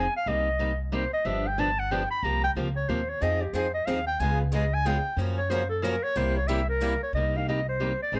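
Acoustic string swing in the jazz manouche style, this virtuosic, swinging waltz-time excerpt features a soft-attacked clarinet soloing up front with vibrato and scooped notes over a dark, picked steel-string guitar with audible finger squeak and a woody pizzicato upright bass, while a bright, boxy second swing guitar joins from 3.2 to 6.9 seconds, all moving through a chord progression that opens on Cm7, in light reverb with a plate reverb on the clarinet.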